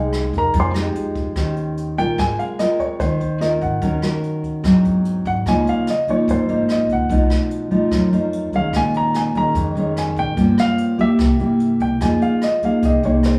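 A dark, mellow baby grand piano carries the melody in this wistful, melancholic bossa nova excerpt at 146 BPM, sitting up front with an intimate sound and audible action noise, and taking a brief solo over the opening 2.2 seconds. Beside it, a thumb-plucked nylon-string guitar with fresh strings and a classical tone plays the accompaniment up front, while a woody pizzicato upright bass and a brushed jazz kit with a punchy kick, hi-hat and rim clicks round out the band. The band plays live in one room with a small room ambience and a wet, large studio reverb, moving through rich jazz harmony such as Fm9, Db69 and B7#11 before settling on Fm7.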